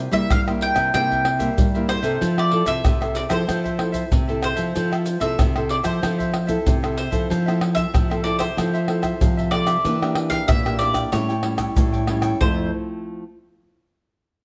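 This sunny, joyful samba and choro excerpt opens with a round, double-strung picked mandolin carrying the melody over two fingerpicked nylon-string guitars: one classical and warm in tone, with audible finger squeak, supplying the accompaniment, and a smaller, darker one with fresh strings, also squeaking under the fingers, holding down the bass. From 0.1 seconds a bright, crisp cavaquinho sits in the background, while a tube shaker, a deep surdo, pandeiro and tamborim play up front, close and dry, with hard hands. The groove moves at a straight 94 BPM in 4/4, in F major. The harmony moves from C7 to Fmaj7, and a drum fill at 6.8 seconds leads into a new section at 7.3 seconds, which passes through Em7b5 and A7 before settling back on Fmaj7. A light reverb gives the acoustic ensemble a little air.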